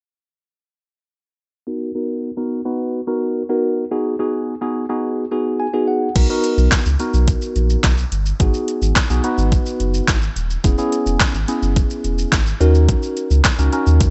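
Summery and carefree, this dance-pop excerpt opens at 1.7 seconds with a clean tine electric piano that is phased, low-pass filtered and pumping from sidechain compression, under a filter sweep that leads to a short fill at 5.3 seconds. At 6.2 seconds a round, dark analog bass, also pumping, and an overdriven, layered pop drum kit arrive together. The kit brings a knocking kick, a deep snare, handclaps, hi-hat, shaker and crash cymbal. The chords move through Bmaj7, G#m7, E6 and D#m7, all set in a digital ambience with softened highs.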